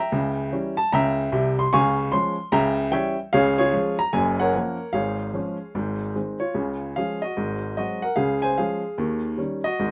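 A solo baby grand piano, warm and natural with short sustain and set up front, carries this exuberant, swinging stride jazz passage at 149 BPM in 4/4 through Db major changes from Dbdim7 and Gbmaj7 to Ab7 and Eb7 in a moderate booth ambience, cut from a longer piece and lasting 9.9 seconds.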